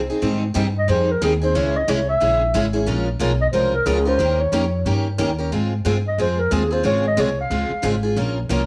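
Swung eighth notes drive this fiery fragment of acoustic string swing, where a dark, breathy clarinet sings the melody with vibrato and scooped notes over a woody pizzicato upright bass, a bright, boxy picked parlour guitar up front and a fresh-stringed second picked guitar with finger squeaks sitting in the background, both guitars tinted by cassette tape in a moderately reverberant room.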